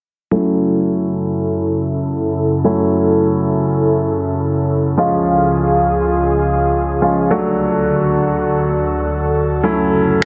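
Driving and confident, this short pop passage, cut from a longer piece, moves at 103 BPM in a straight 4/4 and sits in F# minor. A warm concert grand piano carries the accompaniment from 0.3 to 10.3 seconds, its intimate, natural tone up front with deep bass and audible action noise, softened by a low-pass filter. Alongside it, a breathy pad holds sustained chords across the same span, its soft blend of triangle and detuned sawtooth waves with a noise layer given a slow attack, long release and chorus. A filter sweep runs through the whole passage, and light studio reverb frames the sound. The harmony moves from F#m7 to C# at 5.0 seconds, then to D at 7.3 seconds before returning to F#m7.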